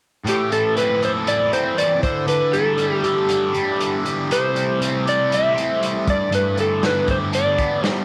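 Psychedelic rock with a trippy, hypnotic mood, this short section is cut from a longer piece and moves through a steady straight-feel groove over the changes Am, Dsus4, C and G. A bright, double-tracked fuzz guitar leads in first at 0.2 seconds with a picked, compressed riff, its distortion colored by a phaser and set up front. The slide guitar joins at 0.3 seconds with a melody played with fingerpicks, slightly broken-up and given a slapback echo, and it sits as the most prominent voice. Underneath, a hand-pumped harmonium holds a reedy, nasal, breathing drone in the background. A crunchy breakbeat kit of hi-hat, tight kick and medium-tuned snare carries the rhythm with a saturated, gritty tone and a rolled-off top. Light reverb and studio ambience wrap the ensemble.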